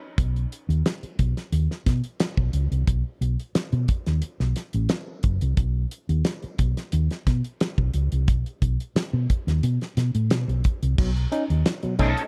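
A straight 4/4 funk groove at 89 BPM sets a funky, gritty mood in B mixolydian, opening on a band accent at the very start of this cut from a longer piece. From 0.2 seconds a damped 70s drum kit sits up front, dry and acoustic, with a fat snare, a tight kick, hi-hat, and dark-toned crash cymbals. Beside it, a hollow-body short-scale electric bass played with the fingers carries the low end, amped and round, moving between F#1 and B2. At 11.0 seconds the harmony lands on a B9 chord, and a barky tine electric piano adds bright, clean stabs through a combo amp. A twangy, picked electric guitar with an envelope filter and ensemble chorus appears briefly at 12.0 seconds as accompaniment. Studio reverb wraps the mix in a dark production.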